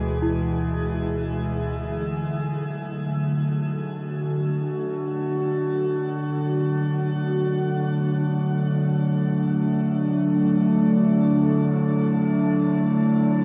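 Serene and weightless, this ambient passage, cut from a longer piece, floats on an up-front, warbling tape-like pad of dark, nostalgic sustained chords softened by chorus, while a small celesta traces delicate, bell-like arpeggios through tape echo well below it in the mix, the whole bathed in a long shimmering reverb as the harmony settles from E/D onto D at 1.7 seconds.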